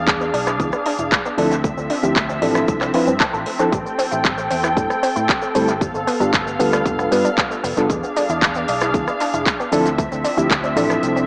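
Groovy and sensual, this 115 BPM nu-disco passage sets veiled, muted strings with sidechain pumping and a nasal, detuned analog pluck arpeggio with chorus and dub echo over a bright, punchy fingered electric bass through an envelope filter, a punchy electronic kick that drops out at 11.0 seconds, an up-front house kit of handclaps, metallic hi-hat, rim click and shaker, a tube shaker in the background, and a reedy, lightly overdriven electric piano with fast tremolo entering at 0.6 seconds, moving through chords like E7b9, Dm9, Am7 and G9 in an echo-heavy mix with spring reverb and a small-speaker sound.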